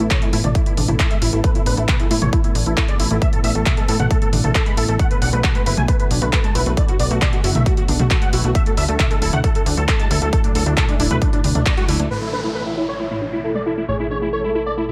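A 135 BPM uplifting trance groove drives this soaring excerpt, with a punchy, up-front electronic kick and a layered big-room kit of handclaps, hi-hats and toms pumping under sidechain until a band accent at 11.7 seconds. A huge, detuned supersaw carries the melody through low-pass filtering and dub echo over a lush unison pluck arpeggio in the background, while a funky, wave-folded analog bass holds the low end through Asus2, Bm7 and Dadd9 chords. At 12.1 seconds the drums stop, filter sweeps move across the supersaw and arpeggio, and a velvety, mellow synth lead with chorus and delay enters beside an electronic downlifter.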